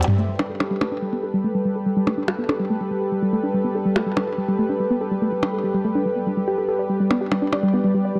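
A detuned analog pad holding slow-attack chords, a soft, round pluck spinning chorus-and-delay-tinged arpeggios and a glitchy electronic kit of clicky hats, percussion blips, toms and a softly clipped snare all open this wistful, playful IDM fragment together, its Gadd9 harmony settling onto G at 6.8 seconds inside a lush hall reverb and a blown-out, overdriven sound before the drums drop away at 7.6 seconds.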